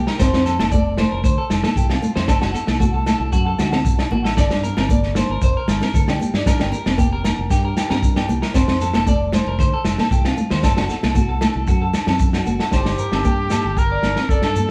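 A full band plays live together in one large studio, with a moderate reverb giving the room some air in this short cut from a longer highlife guitar piece in G minor, moving at a straight 115 BPM in 4/4 with a warm, bittersweet mood. A dark, small-sounding nylon-string guitar is fingerpicked with audible finger squeak, while a bright, twangy clean electric guitar picks arpeggios above it through a spring reverb. A round, punchy fingered electric bass sits underneath, and an up-front vintage drum kit with a lo-fi, muffled character and a rolled-off top drives the kick and snare. Ringing agogo bells sit in the background, a grainy shekere adds texture, and very quiet, high-tuned congas played with soft hands stay close and dry. The chords move from F through D/F# to Gm and back, and at 12.7 seconds a breathy, whispered trumpet with light vibrato steps forward on a Gmadd9 chord, playing an intimate solo line.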